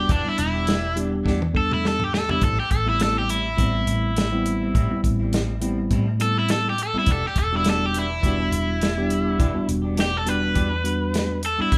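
Recorded live in one room with a moderate large-studio reverb, this short cut from a longer piece is a smoky, brooding straight-eighth soul blues moving from Em7 to Am7 and back to Em7 at 7.1 seconds. An overdriven, bright stack guitar plays the picked solo melody up front over a mellow tine electric piano heard through its built-in speakers, while a clean, twangy, scooped guitar adds stabs in the background. Beneath them a foam-muted fingered bass sounds round and punchy, and a dry, dark acoustic soul kit with a tight kick and a rolled-off top plays a fill from 1.3 to 2.4 seconds.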